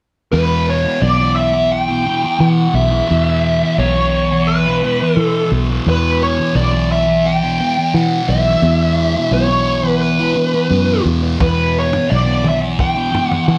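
A dark, picked fuzz lead guitar carries the melody up front, colored by wah, distortion and slapback echo, in this dark, trippy psychedelic rock piece cut from a longer work. Beneath it, a thick, double-tracked fuzz guitar grinds out a low riff through distortion and phaser, while a round, foam-muted fingered electric bass anchors the bottom. A vintage drum kit with a punchy kick, toms and a rolled-off top arrives at 11.4 seconds, all set in a light, small-room ambience.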